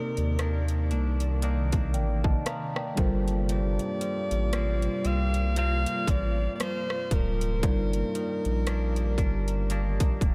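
Smooth and dreamy, this brief excerpt of contemporary R&B drifts at 58 BPM in 4/4 with a swung sixteenth-note feel, moving from Cm9 to Gm11 and settling on Ebmaj7/G. A breathy alto saxophone carries the melody in a jazz style, its subtone and light vibrato colored by scooped notes and a tape echo that trails each phrase. Beneath it, a mellow tine electric piano and a bright, twangy clean guitar playing picked arpeggios with subtle chorus and tape echo fill out the harmony, while an ethereal, airy pad sustains chords in the background through ensemble chorus, phaser and sidechain pumping. Up front, a trap drum kit with a hard-clipped kick, metallic hats and rim clicks sits over a deep, thick saturated sub bass. A very quiet vibraphone with medium hard mallets rings a single metallic G4 from 3.5 to 5.8 seconds, and the whole mix is soaked in a huge ambient reverb with a 9.0-second tail.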